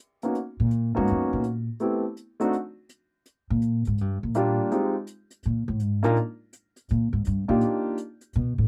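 The recording is dry and close, with the sound of a 1970s studio session and little reverb around the instruments. It is a short cut from a sophisticated, swinging jazz piano trio number in 4/4, with a swung lilt on the eighth notes. The upright bass carries a solo through the whole passage, entering at 0.6 seconds with woody, plucked steel-string tones placed up front in its low register. A warm, natural grand piano sits just as near and plays the melody in a middle range from 0.2 to 8.0 seconds, while a hi-hat played with brushes stays very quiet in a small-room sound. The harmony runs through a rootless Abm11, Am9, Gm7, Fm9 and Bb7 before settling on Ebmaj7.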